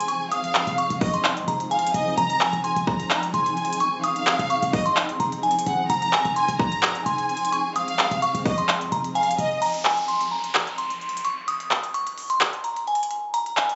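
A half-time trap groove in 4/4 drives this brooding, hard-hitting hip hop fragment, with an up-front electronic kit of crisp hi-hats, handclaps and a hard-clipped, tape-warmed kick. A glassy, crystalline FM synth bell carries the high melody with chorus, a low-pass filter and tape echo. Beneath it, a lush studio violin section bowed close and expressive adds a second line with vibrato, portamento and its own tape echo. A cloudy, evolving granular pad holds a blurred minor-seventh chord in the background, while a punchy, tight 808-style bass with a sine body and noise layer thumps low in the mix. At 9.6 seconds the strings, pad and bass drop out and the kick falls silent, leaving hats and claps under the bell as a faint electronic downlifter sinks through the gap until 13.3 seconds. Captured on a phone in a room with light reverb and studio ambience, the whole recording has a muffled, dulled top end, and it ends abruptly as a cut from a longer piece.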